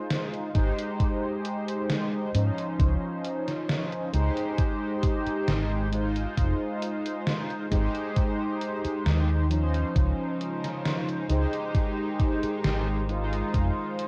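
Vaporwave with a nostalgic, faded mood, built around a mellow, detuned sawtooth synth brass accompaniment that sits up front with lush chorus and tape echo as the harmony moves through Fm7, Abmaj7 and Dbmaj9. A thumpy electronic kick and a gated 80s drum machine on hi-hat and snare, with gated reverb and small room ambience, sit alongside a dark, round hollow-body electric bass carrying the low end. At 10.0 s a rich chamber string section enters in the background with light vibrato, and the recording carries the worn, warbling pitch drift of old cassette tape.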